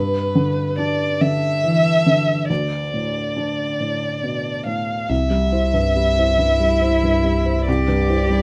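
A moderate studio reverb gives this short excerpt of hopeful, intimate neoclassical piano and strings a gentle sense of space, moving in a rubato 6/8. A woody, dark solo violin carries the melody, played sul tasto with vibrato, over a mellow, felt-muted upright piano that sits close and soft beneath it. A clean sine sub bass enters at 5.1 s, and at 6.4 s a solo cello adds a second line with an airy, smooth bowed tone.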